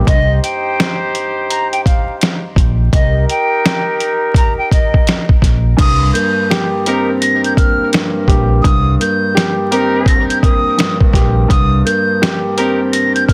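Dense, heavily limited and dry with a bed of vinyl crackle, this reflective, moody boom-bap hip-hop excerpt swings on a muffled, pitched-down sampler-style drum kit with a thumpy kick and a round, deep dub fingered electric bass up front, while a breathy, close-miked silver concert flute carries an expressive, filtered melody through digital delay, a distant, punchy trumpet section adds tight stabs, and a mellow, vintage grand piano with long sustain comes back in at 5.8 s once the break ends.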